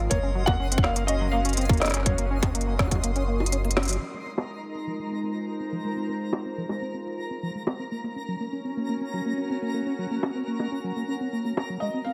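A swirling, phased sawtooth pad, a rubbery acid bass with dub echo, a round sub bass and a twinkling granular shimmer open this intricate, glitchy IDM excerpt, soon joined by a soft felt-muted upright piano melody with delay, an overdriven tight kick that drops out at 3.0 seconds, and a small-room electronic kit of bongos, woody snare and crisp hi-hats under low-pass filtering, before a drum fill and band accent at 3.8 seconds lead into a section where the sub bass has gone and the acid bass's resonant filter sweeps through to the end.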